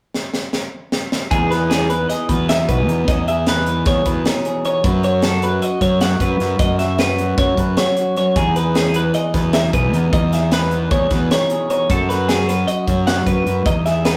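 A clean, twangy twelve-string electric guitar sits up front with compressed, picked arpeggios in this bright, wistful math rock and midwest emo passage at 306 BPM in 9/8 and E major, entering at 1.3 s after an airy, polished fusion drum kit with a high-tuned snare and punchy kick opens on a fill, together with a slightly broken-up electric guitar through a small old amp and a dark, round fingered bass thick with fuzz and overdrive, as the chords move between Emaj7, Bsus2/F# and B5/F# in a rough rehearsal-room recording with wet small-room reverb and warm saturation.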